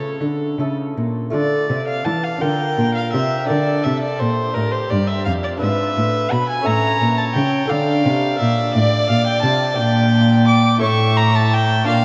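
In a 6/8 at 57 BPM with a rubato feel, this grave, flowing baroque-style sonata movement in D minor unfolds in a vast cathedral reverb, cut from a longer piece and tuned to A4 = 439 Hz. A dark, nasal gut-string violin carries the higher second line while a rich violin with light vibrato sings the melody beneath it, and a reedy cello anchors the bass up front. A delicate fingerpicked lute with double strings fills in the continuo accompaniment as the harmony moves from A through Dm, Bb and Gm to E7/G# before settling back toward A at 10.8 seconds.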